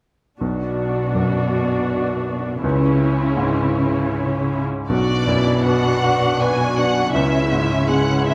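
A bright baby grand piano, a warm viola section and focused, close cellos begin together at 0.4 s in this bittersweet, sorrowful cinematic film-score fragment, moving in a rubato 3/4 over Bm and C#m chords until a lush, expressive violin section takes up the melody with vibrato at 4.9 s, the whole set within the wet reverb of a scoring stage.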